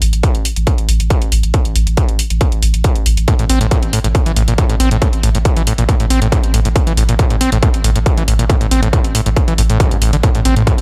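Dark and hypnotic, this driving peak-time techno excerpt opens on a deep, thick saturated sub bass with sidechain pumping and a low-pass filter alongside an overdriven drum kit of hi-hat and toms, joined at 0.2 seconds by a distorted, up-front electronic kick, before a squelchy, gritty acid bass riff with resonant filter plucks, distortion and digital delay enters at 3.3 seconds, all in a dry mix.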